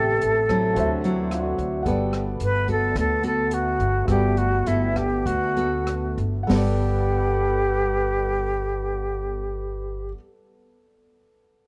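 A breezy, romantic bossa nova excerpt in G major at 94-110 BPM, moving through Am9, D9 and Gmaj9 and slowing down from 1.9 to 6.5 seconds, carried by an airy, vibrato-laden concert flute melody bathed in plate reverb and a scooped trombone second line that drops out and returns at 6.5 seconds. Beneath them, a fingerpicked nylon-string guitar with audible finger squeak, a woody pizzicato upright bass placed up front, and an intimate grand piano with audible action noise keep the accompaniment going, while a swirling, detuned sawtooth pad with phaser and chorus sustains chords in the background. An open jazz kit with a high-tuned snare, rim click and punchy kick plays until 6.6 seconds, all within a dark production with light reverb.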